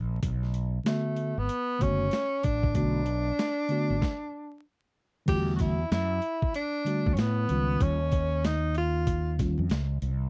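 Nocturnal and smoky, this jazz-hop cut from a longer hip hop piece sits at 95 BPM in 4/4 with a 63% swing on the sixteenths, moving in B dorian over Bm7, then Em11 at 5.3 seconds and D#9 at 7.8 seconds. A bright fretless electric bass, direct and amped, opens the track and stays up front, while a gritty, compressed boom bap drum kit with a thumpy kick, high-tuned snare, hi-hat and crash cymbal carries the groove, re-recorded in a large room. A mellow, clean tine electric piano fills in the accompaniment beneath a tenor saxophone that carries the melody with vibrato, subtone and scooped notes, sounding distant and roomy yet still up front in a jazz-style solo. A stop breaks the flow from 4.0 to 5.3 seconds before the second section takes over. The production is dry and close in a 1970s studio manner, dusted with vinyl crackle.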